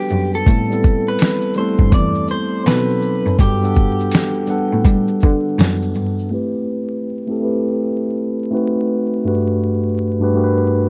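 A gritty, overdriven sampler-style drum kit with a thumpy kick and fat snare sits up front in this reflective, melancholic lo-fi hip hop excerpt at 82 BPM, swinging over Am9, B7b9 and Gmaj9 chords. A mellow tine electric piano with cassette-tape character carries the harmony, while a distant, reedy bowed cello holds the bass, a slightly broken-up fingered electric guitar plays the melody through tape echo until 5.6 seconds, and a grainy egg shaker ticks in the background. From 6.3 seconds the electric piano plays alone under a filter sweep, all set in light reverb with a dark production and vinyl crackle.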